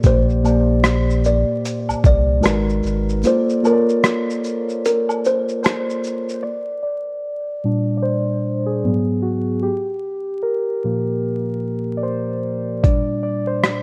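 Muted, felt-like synth keys sit up front in this cosy, nostalgic lo-fi hip hop excerpt at 75 BPM with a swung 16th feel; their soft, dark tone is coloured by chorus, a low-pass filter and cassette-tape wear, and from 6.4 s they take a solo under a filter sweep. A round sub bass, gritty, pitched-down boom bap drums with a thumpy kick, rim click, hi-hat and shaker, quiet maracas and woodblock, and a mellow, woody kalimba melody through analog delay fill the opening, with a break from 3.2 s and the drums returning at 12.8 s. Light reverb, vinyl crackle and the warbly pitch drift of old tape give the recording a worn character.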